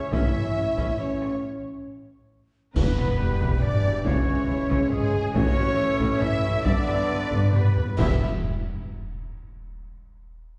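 A taiko ensemble struck with hard sticks drives this dramatic, relentless orchestral film cue at 137 BPM in 3/4, its distant, large-room pounding carrying over dark French horn chords, mellow trumpet stabs, clear trombone chords and a deep floor of tuba, double basses and cellos, while lush violins carry the melody and a second line over viola accompaniment. After a break from 1.4 seconds, an airy, bright flute joins at 2.8 seconds as dark cymbals, bass drum and hard-mallet timpani hit band accents, moving through Em, C#m, A and G before a second accent at 8.0 seconds. The whole cut sits back in a reverberant scoring-stage space with a softened top end.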